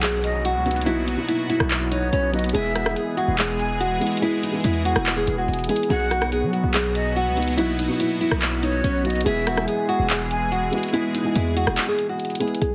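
Heavily compressed and radio-like, with a light reverb, this wistful, dreamy trap excerpt moves at 143 BPM in 4/4 with a half-time feel, cycling between B and E chords. Up front, a bright-hatted electronic trap kit with handclaps and rim clicks carries a gritty, vintage 12-bit sampler edge, its kick dropping out at 11.8 seconds, while a punchy, heavy 808-style bass with a sine core and noise layer hits hard and decays low underneath. A fingerpicked nylon-string guitar leads the melody with a full-bodied classical tone softened by a low-pass filter, backed by a dark, mellow, slightly boxy grand piano. An evolving, airy sawtooth pad with detuned, resonant filter swells and chorus sustains the chords behind them. A breathy jazz flute with vibrato and lifted highs adds an expressive second line from 0.2 to 10.5 seconds, trailed by digital delay, and a very quiet downlifter drifts through the opening moments.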